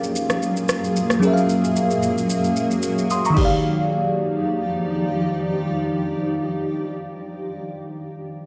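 A swung sixteenth-note groove in 4/4 opens this soulful amapiano fragment, carried by an electronic, layered deep house kit with a deep kick, rim click, shaker and crash cymbal that drops out at 3.5 seconds. Up front, a bell-like FM electric piano with a sparkling noise layer and chorus plays accompaniment, its fast-attack notes decaying across a span from Eb3 to Eb6, and it lingers until 8.5 seconds. Alongside it, equally up front, a cloudy granular pad of detuned sine unison voices holds sustained chords with a slow attack, long release and its own built-in reverb, evolving in a blurred, full-bodied, mellow haze until 7.3 seconds. The harmony moves from Gbmaj9 to Ebmaj9, marking the shift into a second section. The sound is that of a big system in a bare room, wrapped in light digital ambience and a large studio reverb that gives the whole cut from a longer piece a warm, spacious glow.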